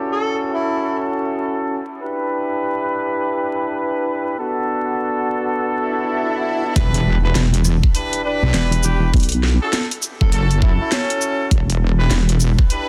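A dense, heavily limited glitch hop track with light digital ambience and a dusting of vinyl crackle, funky and playful at 101 BPM with a swung 16th feel, moving through F#m7, Em7 and Bm7 chords. Clear, punchy horn stabs carry the opening through sidechain pumping, a low-pass filter and dub echo, while a distant, roomy tenor saxophone adds mellow, vibrato-laden melody fragments soaked in its own dub echo. After an electronic swell, the drop lands at 6.8 seconds with an impact, a knocking up-front electronic kick, a drum kit of cracking snare, bright hats, rim click and shaker, and a heavy, saturated sawtooth wobble bass, briefly joined by a nasal, vowel-sweeping wobble bass from 8.5 to 9.6 seconds.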